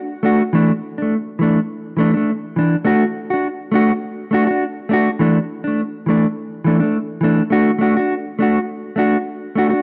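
A moderate plate reverb with a 2.5-second tail surrounds this short, danceable and joyful highlife cut, taken from a longer piece. A mellow, dark and clean fingered electric guitar plays solo and up front from 0.2 s to the close at 9.8 s, moving between D and Asus4 with a lightly swung feel. The first section gives way to a new one at 7.5 s, landing back on D.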